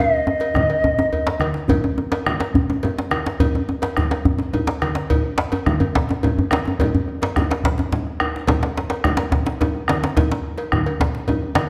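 A bright, reedy bansuri opens this cut from a longer piece, its pure bamboo tone carrying vibrato and tongued notes that sound distant yet sit up front, and it falls away by 1.4 seconds. The music is a West African drum ensemble in 12/8 with a straight feel, powerful and earthy in mood. A drum fill runs through the first 1.7 seconds, after which the percussion continues on its own. A deep, close and dry djembe played with soft hands stands up front, while a medium-tuned djembe and thin-skinned, low-tuned congas sit in the background. A round bombo sounds from a live room and a metallic cowbell rings close, all set in a dark production with a wet recital hall reverb.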